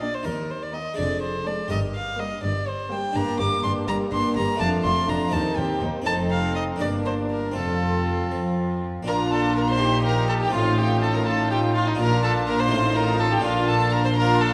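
Baroque-style concerto movement in a lively 6/8, brilliant in mood, cut from a longer piece, with a solo violin up front whose airy bow and nasal gut-string tone carry the melody over a chamber violin section also playing melody in the background and a second violin section on an inner line. Dark violas and a round, plucked Flemish-style harpsichord fill in the accompaniment, while rich cellos and double basses anchor the bass, all bowed in period style with light vibrato on the upper strings. The ensemble is heard from further back in a wet scoring-stage reverb, and the key moves from G minor into a brighter B-flat major from 3.2 s.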